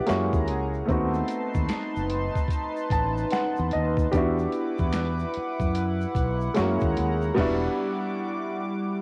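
A clear, woody upright piano and a shimmering, detuned pulse-width pad open this late-night neo-soul R&B fragment in E minor at 74 BPM, with a swung sixteenth feel, light reverb and cassette grit over chords moving from F#9 and B7b9 to Em9. A dark, round fretless bass and a compressed, pitched-down boom bap kit with a thumpy kick and medium-tuned snare join at 0.1 seconds, while band-limited finger snaps, handclaps and tube shaker sit in the background. The piano plays fills at 2.5 and 8.2 seconds, and a band accent arrives at 7.4 seconds before bass and drums drop out, leaving piano and pad to carry the close of this snippet from a longer piece.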